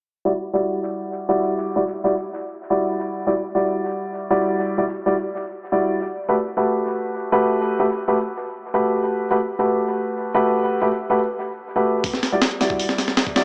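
Dark and atmospheric, this drum and bass excerpt at 159 BPM in E minor opens on mellow, worn grand piano stabs with audible action noise, roughened by vintage 12-bit sampler grit, a low-pass filter sweep and dub echo over Em9 and Gmaj9 chords, before a gritty, compressed breakbeat kit with a thumpy kick and tape-warm character joins at 12.0 seconds, all set in a lush hall reverb with a small speaker sound.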